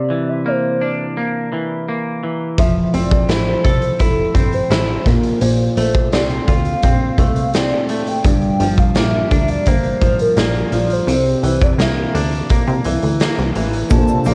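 A raw garage drum kit sits up front once it enters at 2.6 seconds, its punchy kick and medium-tuned snare saturated and gritty in a bright stone room that pumps, with a rolled-off top and a cassette-tape haze. This excerpt of nostalgic, dreamy indie and bedroom pop moves at an unhurried 85 BPM in a straight 4/4, cycling through lush ninth and seventh chords from C9 to Fmaj9, Bbmaj9 and Gm7. A clean, bright semi-hollow electric guitar carries the accompaniment from the start, picked and up front, with lush chorus, warbly pitch drift and tape coloring. Over it, a soft, woody synth lead with a clarinet-like hollowness sings the melody through phaser, analog chorus and tape echo, while a plucky analog bass arrives with the drums, funky and fast in attack, each note decaying. In the closing moments from 13.9 seconds, a mellow, round tonewheel organ with slow rotary spin joins, along with a smooth, vintage analog pad and a grainy egg shaker in the background, all set within a home-cassette studio ambience.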